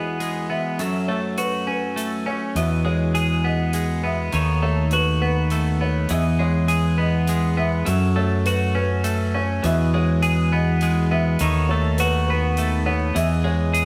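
Hopeful and cinematic, this post-rock passage moves at 102 BPM in 3/4 in E major, circling between Emaj7, F#m7 and B7/D# chords. A bright, twangy twelve-string electric guitar sits up front with clean picked arpeggios, while a pedal steel guitar holds sustained chords with slide and volume swells, and a felt-muted upright piano adds mellow, intimate arpeggios in the background, its action noise audible. A hall-like hi-hat enters at 0.2 seconds, and a growling, overdriven fingered electric bass joins up front at 2.6 seconds, all captured as a band playing live in one room with moderate studio reverb.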